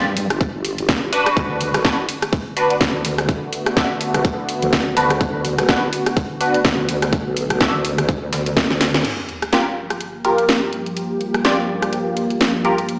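A gritty, bouncy bass house cut from a longer piece plays through a big sound system in a bare stone room, giving it a small-speaker sound, at 125 BPM with a swung 16th feel. An up-front, nasal, band-passed chord stab with phaser and digital delay pumps against a wobbling, saturated vowel-sweep wobble bass until 9.0 seconds. A tight electronic kick, a garage kit with a cracking snare and a very quiet, gritty breakbeat sampler-style kit drive the groove, while an airy, evolving pad with 12-bit sampler grit enters at 1.4 seconds. After a drum fill, a background sub drop lands at 9.0 seconds on a Gm7 as the stabs, pad and garage kit carry on.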